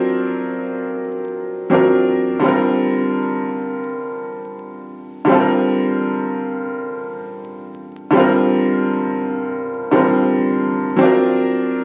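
Late-night and smooth, this short R&B excerpt features a solo baby grand piano with a clear, natural tone and short sustain, placed up front and touched with slapback echo as it moves from D7alt to Gm7 and back to D7alt by 11.0 seconds. A 16th-note swing gives the phrasing a relaxed lilt. The sound sits in a moderate studio reverb with the intimacy of a phone recording in the room, topped with vinyl crackle and compression.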